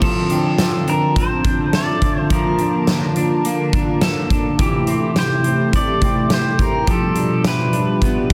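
A smooth, detuned sawtooth pad with chorus, twangy clean electric guitar arpeggios through subtle chorus and digital delay, and a huge, up-front arena drum kit with punchy kick, fat snare and bright cymbals open this dreamy, blissful 105 BPM dream pop excerpt in F major, moving through F6, Bbmaj7, Am7 and G7, as a metallic, ringing vibraphone with medium hard mallets sits in the background from 0.3 seconds, dropping out at 2.6 seconds before returning at 6.0 seconds, and a compressed pedal steel guitar carries the melody with fingerpicked slide and volume swells from 0.9 seconds, all set in light studio reverb on a dense, heavily limited modern master.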